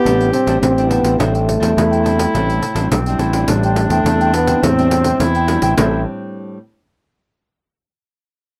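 A dry, close 1970s-style studio sound with light reverb frames this nostalgic, yearning samba and choro excerpt in A minor at 105 BPM, moving from Am11 to Am7 at 3.5 seconds. A dark, breathy trombone with light vibrato carries the melody in a jazz style while a clear, classical-style clarinet sings a second line above it, and a growling, overdriven fingered electric bass sits up front, bright and amped. Behind them, a crisp picked cavaquinho and a small, fingerpicked nylon-string guitar fill in the accompaniment, the guitar ringing on to 6.6 seconds, as a jingly pandeiro struck with hard hands keeps the percussion going.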